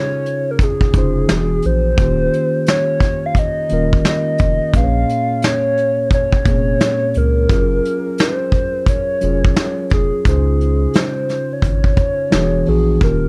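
Mellow and dreamy, this lo-fi hip hop fragment of a longer piece sways at 87 BPM with a swung feel in D-flat major, where a warbling, nostalgic lead with vibrato, chorus and tape echo carries the melody up front over a clean tine electric piano softened by cassette tape and a low-pass filter, joined at 0.3 seconds by a dark, smooth brushed drum kit with a tight kick and rolled-off top and at 0.9 seconds by a deep, round dub sub bass, all set in light reverb as the chords drift from Dbmaj7 through E9 and Eb7 to Bbm7 and Gbmaj7.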